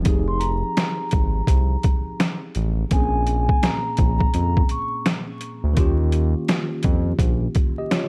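A compressed, pitched-down sampler-style drum kit sits up front in this boom-bap hip-hop excerpt, its thumpy kick, medium-tuned snare and hi-hat pushed into gritty overdrive at 84 BPM with a 63% swing on the sixteenths. A smooth sawtooth-and-square synth bass carries the low end from F1 to F2 with a fast attack, sustained notes and a touch of vibrato, its evolving tone thickened by transformer saturation and also placed up front. Behind them, a worn, slightly out-of-tune tine electric piano plays mellow, filtered chords through Fm7, Bbm7 and Eb7 in F minor. From 0.3 to 5.0 seconds a soft-mallet vibraphone adds a metallic, ringing melody high in its range, its slow motor vibrato trailing through an analog delay. The dry, gritty hardware sound with vinyl crackle gives the piece a tough yet reflective mood.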